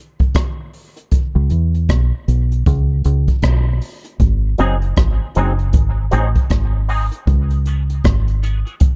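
A swung, unhurried groove opens this deep, spacious dub reggae fragment, with a jazz brush drum kit playing hi-hat, boomy kick and rim click up front in a small acoustic room from the start. At 1.4 seconds a round, punchy fingered electric bass with a foam-muted, amped tone joins just as prominently. At 4.6 seconds a clean, compressed electric guitar arrives lower in the mix, its envelope filter sweeping, thickened by ensemble chorus and trailed by dub echo, over a dark, dry production moving between minor-seventh and dominant-seventh harmony.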